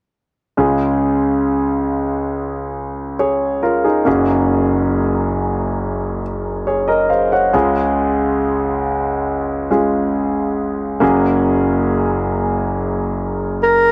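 A slow, straight 4/4 pulse at 69 BPM carries this tender, emotional pop excerpt in Db major, where a clear concert grand piano accompanies from 0.6 seconds. It sits up front with deep bass, long sustain and audible action noise, spanning Gb1 to Gb5 as it alternates between Db and Gbadd9. At 13.6 seconds a breathy alto saxophone joins the piano on a single Bb4, its light vibrato sounding distant and roomy within a dry, close 1970s-style studio recording touched with light reverb.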